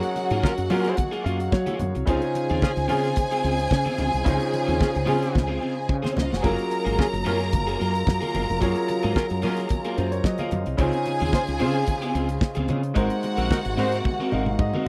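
A dry, close 1970s-style studio sound frames this glamorous, driving disco excerpt at 110 BPM, built over Gbmaj9 and Dbmaj7 chords and turning to Ab9 at 13.0 seconds. A damped drum kit with a fat snare and tight kick sits up front beside a round, woody fretless bass. Very quiet, low-tuned congas add a bright, thin-skinned patter. Punchy pop-style horn stabs ride alongside a lush, bowed violin section carrying the second line, while a mellow, vintage French horn section holds sustained chords in the background. A clear, intimate baby grand piano with audible action noise plays fills at 1.0, 9.7 and 14.1 seconds. An electric guitar at the edge of break-up, picked and compressed with ensemble chorus, fills out the accompaniment.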